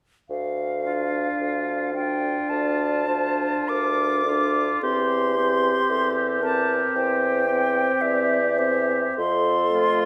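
This classical excerpt is a slow, romantic movement for wind quintet, elegiac and solemn, with a pliant rubato feel in four. The silver concert flute carries the melody from the start, its pure, metallic tone shaded with vibrato and a soft attack and set up front. A mellow bassoon underpins it from the same moment with a low, lightly vibrating bass line. The clear French horn joins almost at once in accompaniment, as the oboe adds a second line with a vintage, gently vibrating sound. The clarinet arrives at 2.5 seconds with a present yet background voice, while the harmony moves slowly through three chords beneath the ensemble. A wet, spacious scoring-stage reverb lends the whole quintet a solemn glow.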